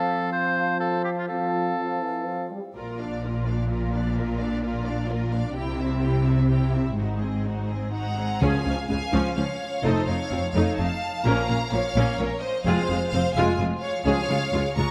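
In a brisk, straight three-beat metre, this heroic, triumphant adventure-film cue opens with a clear oboe, airy silver flute and soft-attack clarinet in the background over up-front French horn chords. Around 2.7 to 2.8 s the strings take over: a focused, close violin melody sings above a lush second violin line, smooth violas, an expressive cello bass and a double bass section with portamento. At 8.4 s the harmony shifts to a new key centre as punchy trombone chords, distant trumpet stabs and a dry timpani hit on calf heads join, all set in a dark production with moderate concert-hall reverb.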